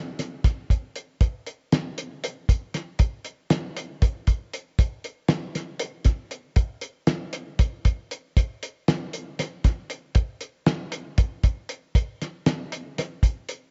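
The rhythm moves in an uneven 7/8 with a straight feel, carried solely by a drum kit in a rock vein. The kit is acoustic and cloth-damped, giving it a thuddy, dark, smooth character, with a fat snare, a tight kick drum and hi-hat. It sits dry and up front, its top rolled off, and plays from 0.2 to 13.6 seconds. A light reverb surrounds the recording, and the overall sound holds nothing above 7.7 kHz, lending it a muffled cast. Cut from a longer piece and staying within a single section, the passage feels hypnotic and mysterious.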